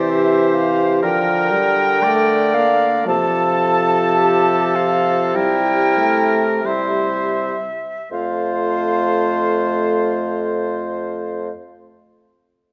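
An airy silver concert flute, with a crisp attack and straight tone heard at a slight distance, carries the melody of this lyrical, rubato slow movement for wind quintet, while a warm oboe with light vibrato sings a second line just beneath it. A bright clarinet with a soft attack sits in the background, a mellow, roomy French horn fills out the accompaniment, and a punchy bassoon with a gentle vibrato anchors the bass, all five playing throughout. The music slows over its opening 8.1 seconds before the harmony settles on F as a new section begins, bathed in a wet recital hall reverb.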